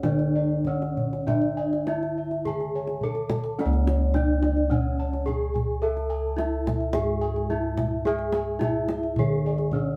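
Recorded live in one room with moderate studio reverb, this stately, hypnotic Javanese gamelan passage in C# pelog moves at 106 BPM in 4/4 with uneven beats, cut from a longer piece. Up front, a bronze metallophone struck with a wooden mallet carries a ringing melody, its paired tuning giving shimmering beats, while bright, round bossed gongs play arpeggios above. An airy metallophone with padded disc mallets adds soft arpeggios in the background, padded gongs supply a mellow bass, and a tight, close kendang keeps the percussion until 9.9 s, with the music moving into a new section at 3.6 s.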